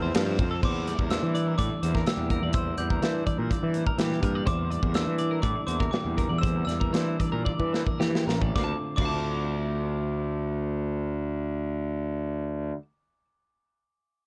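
An up-front, round fuzz bass drives this restless, intricate math rock and midwest emo fragment in D minor's shadow of worn cassette warble, joined by a tight acoustic drum kit that slows from 4.5 seconds into a fill and drops out at 9.1 seconds, a dark, fingered clean electric guitar in the background, a compressed twelve-string electric guitar spinning arpeggios through spring reverb and analog delay, and a bell-like glockenspiel struck with brass mallets ringing the melody through its own delay.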